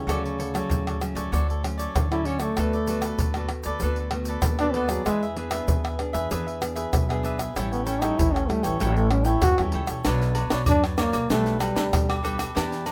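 Sunny and joyful, this samba and choro excerpt in a straight 4/4 puts a punchy, forceful trombone up front, soloing in a jazz style with scooped notes from the start until 10.1 seconds, over chords moving from Dmaj7 through E7 and A7. Crisp picked cavaquinho and fingerpicked classical nylon-string guitar, with audible finger squeak, fill out the accompaniment, while a woody, growly pizzicato upright bass anchors the low end. Close, dry percussion from egg shaker, tight surdo, pandeiro, tamborim, caixa and agogo bells, played with soft hands, sits up front in a light reverb as the music turns toward Bmadd9 in a new section at 10.1 seconds.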